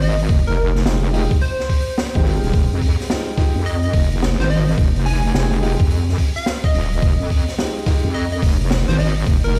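A swung 16th-note groove at 107 BPM in 4/4 drives this funky, swaggering glitch hop excerpt in F minor, resting on a single Fm9 chord. A gritty, thumpy, pitched-down electronic kick with a sampler-style, tape-tinged character comes in at 0.3 s alongside a heavy, saturated wobble bass that sits up front. That bass is detuned and resonant, with chorus, and it wobbles between Eb1 and F2. Behind them, an acoustic jazz kit adds natural hi-hat and a high-tuned snare, while a punchy, catchy unison lead plays the melody from Bb4 to Ab5 with a filter sweep, a noise layer, a sub octave, lush chorus and delay. A dark, boxy grand piano plays mellow stabs from 0.9 s to 8.1 s, shaped by sidechain pumping and delay. The whole mix sounds as if played on a big sound system in a bare room, with a large studio reverb and small room ambience around it.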